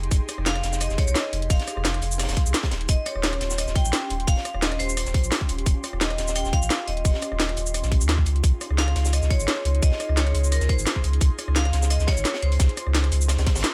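Set in a small room, this melancholic, lush liquid drum and bass excerpt moves at 173 BPM in 4/4 with a light sixteenth-note swing, as a tight, up-front electronic kick and a layered kit with a cracking snare, metallic hats, rim click and shaker drive it over a round sine sub bass. Behind them sits a gritty, saturated breakbeat kit with a high-tuned snare and rolled-off top, while a breathy, detuned pad with chorus holds slow-blooming chords through Fm9, Eb13 and Dbmaj7. From 0.5 seconds a bright, ringing vibraphone played with hard mallets carries the melody through a digital delay.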